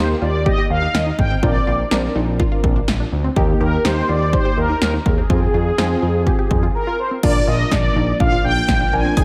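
A straight 4/4 house drum kit with a punchy kick and snare drives this wistful, nostalgic synth-pop excerpt at 124 BPM, entering at 0.5 s beneath a fat, saturated analog bass. Up front, a mellow, brassy synth lead carries the melody through chorus, phaser and delay, while round analog keys supply accompaniment over Eb, Bbadd9 and Fm, and a detuned unison pluck plays arpeggios in the background. After a short break at 6.8 s, an evolving, warbling resonant pad joins at 7.2 s as the harmony moves to Bb, and the mix sits in a lush hall reverb that gives a big arena sound.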